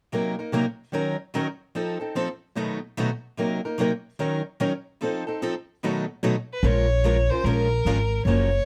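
Close, dry and finely detailed, this short cut from a longer jazz manouche piece swings at 148 BPM in Bb minor with a bittersweet mood. A boxy, picked old ladder-braced acoustic guitar and a picked steel-string acoustic guitar, complete with finger squeak, carry the accompaniment from the start through a repeating Cm7b5, Ebm7, F7, B7 progression. At 6.5 seconds a rich, smooth and even bowed violin with vibrato takes the melody, and at 6.6 seconds a woody, thumpy pizzicato upright bass arrives as the harmony settles on Bbm7.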